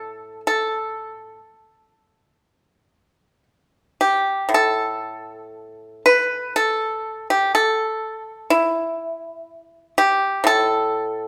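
Free-flowing rubato over a loose 4/4 gives this short Chinese traditional passage a serene, elegant calm. A solo pipa, plucked with fingerpicks, carries it from start to finish, sounding bright, percussive and up front as it moves between its low and upper registers, with a second section beginning at 4.5 seconds. The instrument's close, dry attack sits within the wet reverb of a large studio room, and the piece is cut from a longer work, ending at 11.3 seconds.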